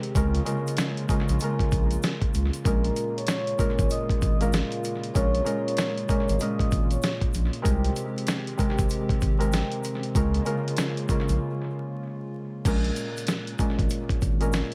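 A swung boom-bap groove at 96 BPM in 4/4 drives this tough, gritty hip-hop excerpt in Bb dorian, built on a dusty, compressed sampler-style kit with a thumpy kick, medium-tuned snare, hi-hat and crash sitting up front with analog delay, while a grainy tube shaker ticks close and dry in the background. A deep, saturated sine sub bass anchors the low end, and a thumb-plucked Celtic harp rings out up front through cassette tape coloring and analog delay, moving through Db6, Bbm7 and Abmaj7 chords. Behind them, a hollow, flute-like pad with chorus holds soft sustained chords until 12.6 seconds. From 2.6 to 7.0 seconds, a vibraphone with soft mallets adds an airy, metallic melody with slow motor vibrato and its own delay trails. A break at 11.4 seconds leads into a new section at 12.7 seconds, all set in an echo-heavy mix with light small-room reverb and vinyl crackle.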